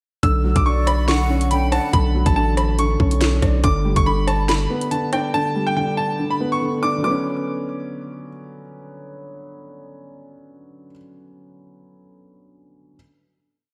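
A bright, woody upright piano loops a delayed melody over a dark, boxy grand piano arpeggio in this ominous half-time drill track at 141 BPM in B minor, where a deep sine 808 bass follows the hard-clipped kick of an overdriven, gritty drum kit with skipping metallic hats, a breathy flute adds a sparse delayed counter-melody from 0.7 to 1.9 seconds, and the grand piano rings on alone in the reverb-soaked, dreamy mix until 13.0 seconds.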